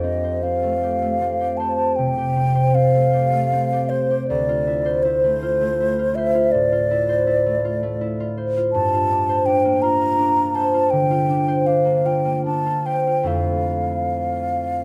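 Pastoral and luminous, this impressionist classical duo unfolds in a rubato 12/8 lilt, cut from a longer piece. An airy, hollow concert flute sings the melody up front with vibrato and tongued notes, while a fingerpicked concert harp rings out the accompaniment beside it, moving through lush chords from Fadd9 to Dm9 and Gm11 before settling on Fmaj7 at 13.3 seconds. Close, detailed microphones catch both instruments in a wet recital hall reverb that lets every note bloom.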